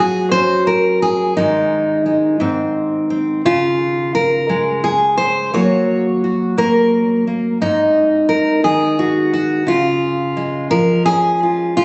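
A loose, rubato sway in 6/8 carries this gentle, peaceful solo folk fragment, played throughout its 11.8 seconds on a single fingerpicked steel-string dreadnought acoustic guitar. The guitar sits up front with a warm body and audible finger squeak, moving through a short, unhurried progression that comes to rest on the home chord at 9.7 seconds. Captured on a phone in the room with light reverb, the sound has a soft, dulled top end and an intimate, homespun closeness.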